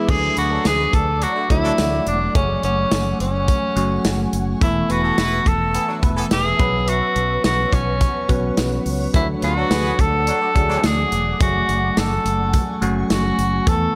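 1980s-style pop at 106 BPM in a nostalgic, glossy mood, this excerpt features a punchy, up-front tenor saxophone melody with digital delay over a bell-like tine electric piano with phaser, a round fingered electric bass, a punchy studio drum kit with tambourine and crash, loose clear horn stabs from 0.4 to 10.8 seconds, and a cloudy, evolving granular pad blurred in reverb in the background, all moving through D, F#madd9, Esus4 and Bsus2 chords in a small, lightly reverberant room.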